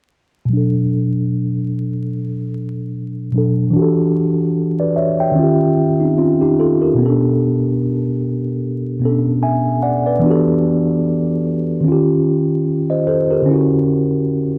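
Hazy and reflective, this slow hip hop cut from a longer piece moves at 74 BPM in 4/4, with a gentle swing on the sixteenths. A mellow tine electric piano carries the whole passage as accompaniment, sitting up front with a clean, warm tone that sounds as if it comes through built-in speakers. A low-pass filter dulls its upper edge, and a filter sweep shapes its sound through the first half, up to 7.0 seconds. The chords cycle from Bm7 to Em11 and D#9, then repeat in the second half before settling on Dmaj9 near the close. A moderate plate reverb and a bed of vinyl crackle lend the recording its dusty, lived-in atmosphere, and the whole thing is tuned slightly low to A4 = 438 Hz.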